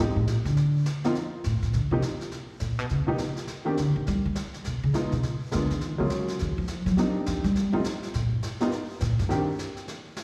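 Jazz piano trio at a brisk 206 BPM in 4/4, swinging and sophisticated, in a clip cut from a longer piece where the plucked, thumpy upright bass takes a solo from the start. The clear, boxy upright piano carries the melody with short sustain, plate reverb and slapback echo, moving through chords such as Fm7, Bb7b9, Ebm11 and Cm9. Brushed snare enters at 0.3 seconds, sitting low in the mix with its own slapback echo, and the whole trio comes through a live gig's PA with recital hall reverb.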